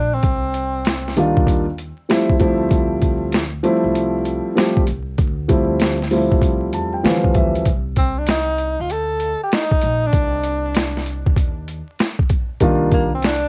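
A breathy tenor saxophone carries the melody in a mellow jazz style, with vibrato, scooped notes and a smooth top, sitting up front as a solo voice that opens the track briefly and returns at 8.0 seconds. This is a nocturnal, cool slice of jazz-hop cut from a longer piece, moving at 97 BPM in 4/4 with a 16th-note swing. A dark grand piano supplies intimate, vintage accompaniment from 1.2 seconds, its action noise audible, and takes a fill from 6.4 to 7.7 seconds. Underneath, a pizzicato upright bass with steel strings gives a woody, thumpy foundation throughout, while a compressed, pitched-down boom bap drum kit brings gritty hi-hat, a thumpy kick and a high-tuned snare to the front. The harmony moves from Cm11 to Dm11 and settles on Cm9. Light reverb and vinyl crackle frame a homemade cassette sound, with tape character on the drums and piano.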